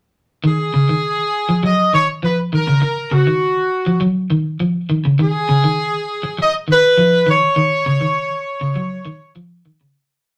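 A rough rehearsal-room recording with a small, wet room reverb frames this short, hypnotic and defiant afrobeat piece, a straight 4/4 groove at 101 BPM that runs from 0.4 seconds and fades out from 7.6 seconds. An up-front electric guitar on the edge of break-up picks a low, slightly gritty arpeggiated ostinato. A bright, punchy horn section sits just as present, playing tight, pop-style call phrases built from a short motif and coloured by a light vibrato.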